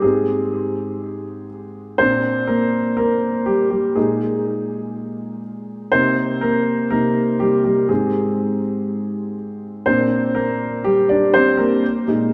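A pop piece cut from a longer work, carried by a concert grand piano playing solo from start to finish across its 12.3 seconds. The mood is driving and earnest, with a straight 4/4 feel that keeps it moving forward. The piano sits up front with a warm tone and deep bass, ranging from Ab2 up to D5, and a tape echo colours its sound. A lush, wet hall reverb surrounds it, giving the rough home-demo mix a spacious tail. The harmony cycles through Abmaj7, Gm/Bb, Bb7sus4 and Cm7 before returning to Abmaj7 and Gm/Bb.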